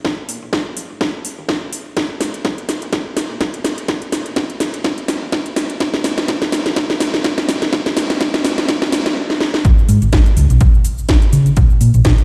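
Heard through a big sound system in a bare room and washed in a moderate echo-chamber reverb, this filtered disco house fragment feels nostalgic and sensual, with a swung groove cut from a longer piece. A round, dark hollow-body electric bass, fingered and amped, sits up front, pumping under sidechain and shaped by high- and low-pass filters. An analog, punchy electronic kick and an overdriven, layered house kit with cracking snare, metallic hi-hats and cabasa drive a fill-laden build-up that gives way to a drop at 9.6 seconds.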